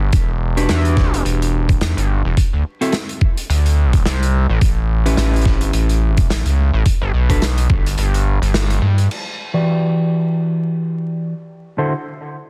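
A dense, heavily limited modern master with vinyl crackle frames this gritty, funky glitch hop excerpt at 107 BPM in E minor, swung on the sixteenths. A sawtooth, wave-folded synth bass and a knocking, tape-warm electronic kick sit up front over a loose, small-room acoustic kit with dark cymbals, hi-hat and snare. A dark, clean, fingered electric guitar plays stabs through sidechain pumping, low-pass filter and dub echo over chords moving from Em7 through D7(no3), A7 and G. The kick drops out at 8.0 seconds before a band accent, and once the bass and kit stop at about 9.1 seconds, a filter sweep carries the guitar to the close at 11.9 seconds.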